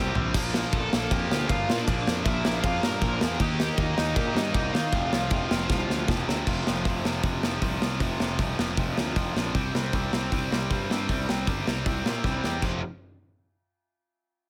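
Upbeat and rowdy, this straight-ahead punk rock excerpt drives on a tight, double-tracked distorted guitar riff up front, a growly fuzz-overdriven picked bass, and a punchy acoustic rock kit with bright cymbals and drum fills at 5.7 and 12.2 seconds, while a high-gain lead guitar carries the melody in the background until 6.1 seconds, all set in light reverb.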